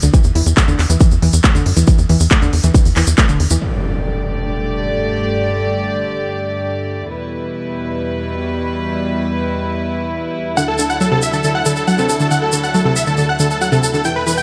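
A straight 4/4 pulse of punchy kick, crisp hats and handclaps, a tight sawtooth sequencer bass, grainy tube shaker and round analog pluck arpeggios with chorus, tape colour and delay opens this euphoric, bittersweet uplifting trance excerpt, until kick, kit and bass stop by 3.6 s and dark, floating bowed string chords arrive with an electronic impact, and then at 10.6 s the pluck and shaker return beneath a huge, detuned, compressed supersaw melody with vibrato and delay, the sidechained pluck, strings and lead pumping under light reverb.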